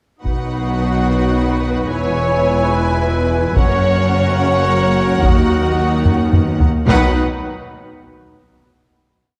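Heavy single strokes from a close taiko ensemble drive this triumphant, adventurous epic orchestral film cue in B major at 72 BPM in a straight 6/8, where lush tremolo violins carry the melody over background second violins doubling it in unison, tremolo violas, soft mellow trumpet stabs, a very quiet, bright trombone section and vintage-toned French horns holding chords, a faint bowed string section, and distant cellos with focused double basses anchoring the bass, all moving through B, E, F# and D#m before a drum fill from 6.1 s leads into a final B chord at 6.9 s, set in a dark, warm concert hall sound.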